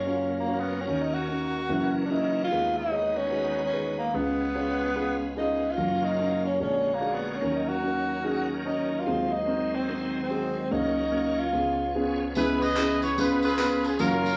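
Uptempo gospel with a soulful, jubilant swing, where a breathy, whispered tenor saxophone carries the melody with scooped notes over a dark, boxy grand piano and a shouting tonewheel organ with key click and slow rotary speaker, until the sax stops at 11.9 seconds and a tight horn section takes over the melody at 12.4 seconds alongside vintage tambourine and group handclaps, all heard together in a live studio room with moderate reverb.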